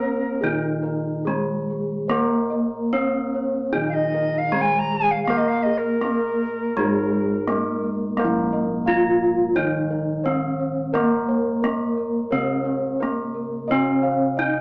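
Javanese gamelan in a shimmering, ceremonial mood, this short piece is cut from a longer work and moves in a steady four. A bronze metallophone struck with a horn mallet carries the melody up front, its ringing, paired tuning producing shimmering beats in a boxy small-room sound. Alongside it, a mellow, reedy alto recorder plays a second line with airy vibrato, a soft chiffy attack and rolled-off highs, falling away at 7.9 s just before a new section opens at 8.2 s. Beneath them, a softer metallophone on padded disc mallets supplies the accompaniment, while a bright, round set of bossed gongs and a vintage, band-limited metallophone in the background trace arpeggios. A dark, smooth set of bossed gongs holds the bass, and the whole band, playing live in one room, is bathed in wet studio reverb with a small-speaker character.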